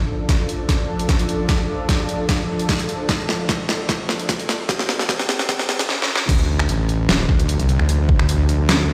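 A lush, detuned sawtooth pad with chorus and sidechain pumping opens this heavy, chaotic half-time wobble dubstep fragment in D minor at 150 BPM, soon joined by an up-front, overdriven electronic kit and knocking kick with a deep snare, bright hi-hats, finger snaps and crash cymbal through a filter-swept build-up and drum fill, until the drop at 6.3 seconds brings in a saturated sawtooth-and-sine wobble bass, all heard through a big sound system in a bare room with a lush hall reverb.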